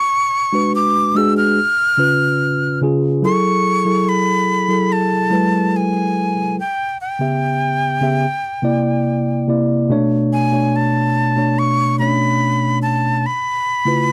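A breathy, bright jazz flute with vibrato and a crisp, chiffy attack carries the melody from the start of this smooth, silky soul excerpt in F# minor at 72 BPM, joined at 0.5 seconds by a mellow tine electric piano heard through its built-in speakers, both up front in a dry, close 1970s-style studio sound with light reverb and a faint mains hum as the harmony moves through rich chords such as F#m9, C9 and Bm9 before closing on C#7alt.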